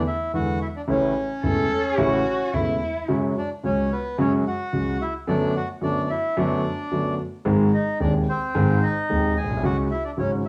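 A rubato 4/4 pulse around 110 BPM carries this playful, nostalgic tango fragment, moving from A major into F# minor at 3.1 seconds under a moderate studio reverb in a homemade cassette recording. A reedy, airy bandoneon sings the melody up front over an intimate, smooth concert grand piano with deep bass, vintage character and audible action noise, both colored by cassette tape. From 1.4 to 3.1 seconds a single bowed cello adds a brief, warm second line with expressive vibrato and portamento, also touched by cassette tape.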